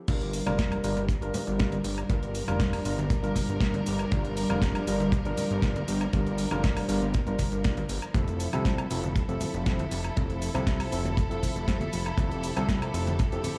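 Set in a small, echo-heavy room with light reverb, this sensual, sleek nu-disco clip is cut from a longer piece and sits at the drop from start to finish. A dry, tight acoustic kick drum with studio reverb sits up front beside a fat, detuned sawtooth bass with a wave-folded edge, filter sweep and fast attack, its sustained low notes pumping under sidechain compression. The layered, tape-warm electronic house kit adds a punchy snare, warm hi-hats, shaker, woodblock and crash cymbal, treated with studio reverb and analog delay, while very quiet, compressed congas played with hard hands sit deep in the background. A worn, slightly out-of-tune tine electric piano, sounding as if heard through its built-in speakers, comps with analog delay and sidechain pumping. A lush, bowed string section holds smooth chords with vibrato, also pumping, as the harmony moves from Gm7 to Fmaj7 at 8.1 seconds.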